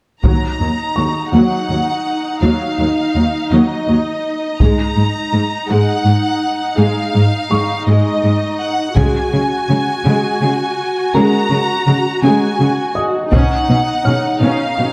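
Relentless and vast, this hybrid orchestral and electronic film-score excerpt in a slow 6/8 sets a lush, vibrato-rich violin section singing a high melody over a rich, smooth viola section and focused, close cellos, while heavy-stick taiko drums pound through a small-room sound and a soft, felt-muted upright piano, its action noise audible and trailed by delay, drifts in at 1.0 seconds in the background, all bathed in a moderate scoring-stage reverb as the harmony moves from Ebm through Absus2 and Dbsus4 to Badd9.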